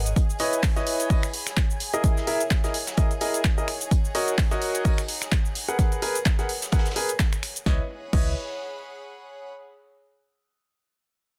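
A clear, intimate baby grand piano riff with audible action noise sits up front in this soulful, energetic piano house cut at 128 BPM in C# dorian, its filter-swept, delayed lines pumping over C#m9, F#13, D#m7 and G#m9 against an overdriven electronic kick and a punchy analog drum machine of snare, handclaps, finger snaps, hi-hat, shaker and crash. A very quiet, dark brush kit, a silky detuned string pad, and an earthy bowed chamber string section that carries on to 9.5 s fill the background. A hollow, organ-like FM bass sounds briefly at the very start and returns at 7.7 s, all in a dense, heavily limited modern master.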